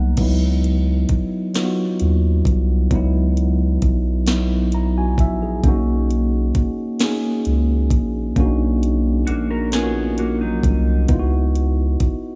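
Sultry and yearning, this slow six-eight R&B excerpt moves at 44 BPM in C# dorian, settling into a dreamy, reverb-soaked mix under a moderate plate. A mellow tine electric piano carries the accompaniment up front from the start, adding fills at 0.0 and between 4.3 and 5.6 seconds as the harmony drifts from C#m11 to Bmaj9 and back to C#m11 at 11.1 seconds. A round analog bass sits deep and close, its dark, sustained tone anchoring the low end. The smooth, produced drum kit brings a knocking kick, sharp snare, metallic hats and crash cymbal, roughened by vintage 12-bit sampler grit. A clean, fingered electric guitar with subtle chorus slips in briefly as a second line from 9.3 to 11.1 seconds, its compressed tone adding a shadowy touch.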